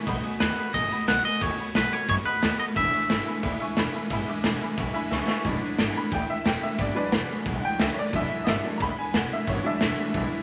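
A moderate studio reverb gives this short rockabilly cut a lively room sound. The raw garage drum kit sits up front, with its punchy kick, medium-tuned snare and hi-hat saturated and gritty, the top rolled off in a pumping stone room. At 179 BPM in a straight 4/4 and in E mixolydian, the mood is rowdy and upbeat as the harmony moves from B7 to E7. A woody, thumpy upright bass on gut strings anchors the low end beneath a picked jumbo steel-string acoustic guitar with fresh, full-bodied strings, set in the background. A detuned, jangly vintage upright piano fills out the accompaniment. A clean, twangy electric guitar carries the melody from 0.4 to 5.1 seconds, then a drum fill leads into a honky-tonk piano solo from 5.5 seconds to the end.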